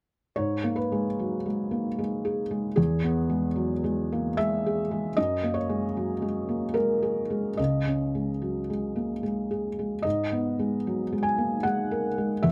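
A felt-muted upright piano carries this short neoclassical minimalist piece alone, playing from 0.4 to 12.5 seconds across a range from C#2 to G#5. Its tone is soft and mellow, sitting up front with the natural sound of the instrument's action noise audible. The music moves at 75 BPM in 3/4 with a rubato feel, in G# minor with tuning at A4 = 439 Hz, and the mood is intimate and wistful. The harmony moves from G#madd9 through E, F#add9 and C#sus2 before returning to G#madd9 at 10.0 seconds. Close, detailed microphones and a light reverb frame this quiet fragment taken from a longer work.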